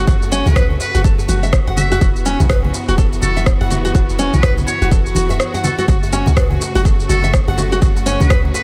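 A dry, echo-heavy mix carries this warm, hypnotic afro house cut, with a deep, layered electronic kick up front over a boomy, mellow 808-style bass, while rich bowed strings and a bright, fingerpicked nylon-string guitar pump against the sidechain from the start. An overdriven electronic shaker and rim click trail dub echo, joined in the background by a cracking djembe with metal rattles and thick-skinned, low-tuned congas. From 0.5 s a distant, buzzy trumpet with a metal mute plays a jazz-style solo through analog delay, while the guitar's arpeggios run through analog delay of their own, over chords moving from F#m to Esus2 and back.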